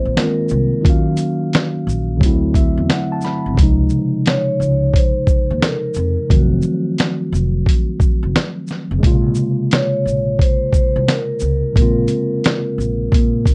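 A gritty, sampler-style drum kit with a thumpy kick, fat snare, hi-hat and shaker sits up front in this melancholic, nostalgic lo-fi hip hop excerpt at 88 BPM in Bb minor with swung 16ths, alongside a woody pizzicato upright bass, a clean tine electric piano playing mellow accompaniment through cassette-tape coloring and a low-pass filter, and a dark, ringing soft-mallet vibraphone melody, also low-pass filtered, all in light reverb with an overall cassette-tape sheen.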